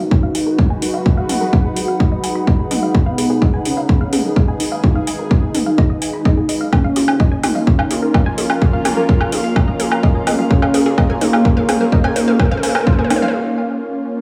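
Melodic techno at 127 BPM in G# dorian, dramatic and melancholic, this excerpt is a build-up over G#m7 and A#m/G#: a thick, bold detuned saw lead with vibrato carries the melody as a filter sweeps across it, while a lush unison pluck spins echoing arpeggios under its own sweep in the background. An evolving, airy resonant pad and a nostalgic, lo-fi warbling pad hold sustained chords and texture, both pumping against the kick, above a very quiet, deep, rumbling detuned bass. A punchy, up-front electronic kick and a house kit of metallic hats, toms and woodblock drive a drum fill through the echo-heavy, chamber-like reverb until most parts drop away around 13.3 seconds, leaving the resonant pad to carry a short break.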